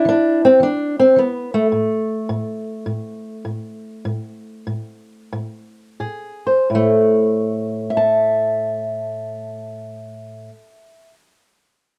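Acoustic country blues with a laid-back, rollicking mood, swinging in 4/4 somewhere between 83 and 106 BPM, in this short cut from a longer piece. A single fingerpicked old ladder-braced acoustic guitar, dark, woody and boxy with old strings, sits up front in a close, detailed recording with moderate studio reverb, opening on an E5 chord. It breaks off at 1.7 seconds, and the tempo slows from there until 6.7 seconds; the guitar returns at 6.0 seconds on a G#add9/A# chord and settles onto A5.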